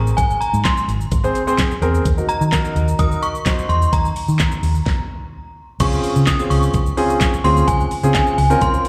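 Upbeat and summery, this dance-pop excerpt sets a ringing, warbling FM synth chime melody, thickened with chorus, delay and slapback echo, over a polished baby grand piano and a round, punchy muted electric bass that both carry sidechain pumping, while an electronic R&B kit with a knocking kick, fat snare and metallic hats drives the straight 4/4 groove, the mix heard through a live venue PA in recital-hall reverb, with a stop from 4.9 to 5.8 seconds before the harmony moves from Abadd9 and Ebm to Dbmaj7.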